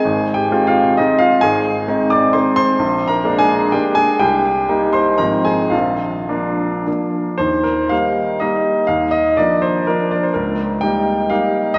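Romantic classical piano in the form of a triple-time dance in 3/4, this short cut from a longer piece carries a proud, graceful character in E-flat major. The tempo moves between 102 and 140 BPM with a flexible rubato feel, and the dotted rhythms give the dance its lilt. A baby grand piano plays solo throughout, ranging from Ab1 up to D6, with a clear, intimate and natural tone, long sustain and audible action noise, and it sits up front in the mix. The opening phrase moves through harmonies such as Fm/Ab, Ab, Bb7 and Cm7 before settling onto E-flat at 7.4 seconds, where a new section begins and drifts toward Eb7/Db by 10.3 seconds. A wet church reverb with a 3.2-second decay surrounds the instrument, and the tuning sits slightly high at A4 = 445 Hz.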